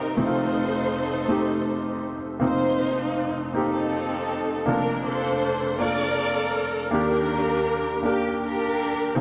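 A string section and a baby grand piano begin together, opening this soulful, reverent gospel passage cut from a longer piece. It moves at a slow 54 BPM in 6/8, counted in dotted quarters with a straight feel. The bowed strings carry the melody between C4 and D5 with vibrato, portamento and a smooth top, sounding expressive and up front. The piano plays accompaniment across a broad span from F1 to A5, with an intimate, present tone and audible action noise. The harmony moves from F7 at 0.2 seconds through F7sus4 and Bbmaj7/F to Ebmaj7 at 6.9 seconds. A long cathedral reverb of 5.0 seconds soaks the mix, giving it a dreamy, wet glow through to 9.2 seconds.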